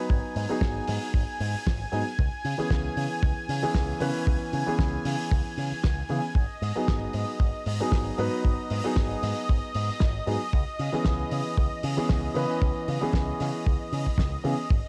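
Nu-disco with a cosmic, sensual mood, this excerpt sets an up-front grand piano, intimate with audible action noise and short sustain, over a lush, detuned pad whose sustained chords carry chorus, sidechain pumping and cassette tape color, while the piano adds tape echo and pumping of its own. A bright, picked electric bass with an envelope filter runs through the G#m7 to C#m7 changes, and a tight, dry kick sits up front beside a damped 70s kit of hi-hat and fat snare with a rolled-off top. The whole cut has the light reverb and small-room ambience of a home cassette recording, with a swung sixteenth-note feel.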